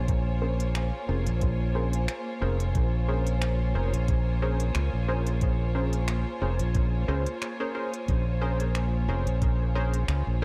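A bright fingered electric bass sits up front with tube saturation, anchoring this hazy, deep ambient dub fragment at 90 BPM in Bb minor, swung on the sixteenths over a Bbm9 chord. A soft, tape-warm electronic kick in the background runs until 9.6 seconds alongside a small-room electronic kit of finger snaps and crisp hi-hats. Muted sawtooth dub chord stabs with chorus, cassette tape grit and dub echo arrive at 0.4 seconds, while a distant, biting string section holds sustained chords and a resonant, bubbling stepped-filter texture with chorus and built-in reverb drifts far behind.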